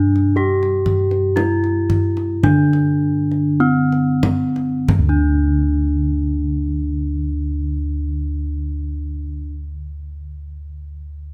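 Close, detailed and lightly reverberant, this ceremonial, serene Javanese gamelan excerpt pairs a ringing bronze metallophone melody struck with a wooden mallet against dark, round, beating bossed gongs in the bass, while a deep, compressed, saturated kendang plays from 0.2 to 5.5 seconds as the music slows down through its opening 4.9 seconds.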